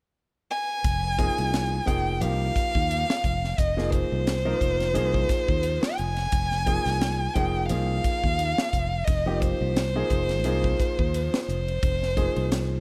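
A loosely swung sixteenth-note groove in 4/4 drives this short, nocturnal slice of electric jazz fusion with a funky edge. The violin enters first at 0.5 seconds: a single bowed player heard close and up front, whose soft attack, vibrato and portamento give the melody an expressive voice, trailed by an analog delay. Fretless electric bass and an acoustic drum kit join at 0.8 seconds as the harmony settles on Fm9. The bass sounds warm, direct and forward with an ensemble chorus, while the polished kit pairs a punchy kick and high-tuned snare with hi-hat and ride in an airy studio room. A clear, present grand piano adds accompaniment from 1.2 seconds, sitting a little lower in the mix, and light reverb lends the group a small-room intimacy in this passage cut from a longer piece.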